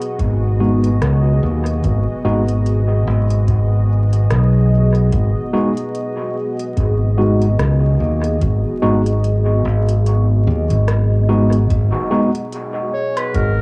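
A deep, dark pad opens this meditative, hazy ambient dub fragment, holding sustained G# minor chords with a detuned, sub-octave body softened by chorus, reverb and cassette tape. An organic electronic kit sits low in the mix with crisp hats, rim clicks and woodblock, tape-warmed and thrown into dub echo, while a deep analog kick pulses in the background at a relaxed 73 BPM with a lazy 16th-note swing. The bright, direct fingered electric bass is the most forward voice, anchoring the low end from the start. A clean tine electric piano drops stabs coloured by 12-bit sampler grit and dub echo, and the kick falls away between 10.1 and 11.7 seconds. In the closing moments a distant, roomy clarinet enters at 12.9 seconds for a brief classical-style phrase, all of it wrapped in vinyl crackle and the modest air of a small room on a home cassette recording.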